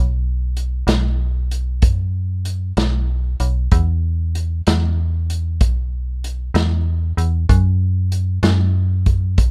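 A dry, close-sounding excerpt of slow blues in 12/8 at 64 BPM, swaggering and laid-back, where a metallic, digital FM bass with a fast, decaying attack sits up front from the start and a dark vintage drum kit of hi-hat, punchy kick and medium-tuned snare, smooth with a rolled-off top and small-room character, joins at 0.6 seconds.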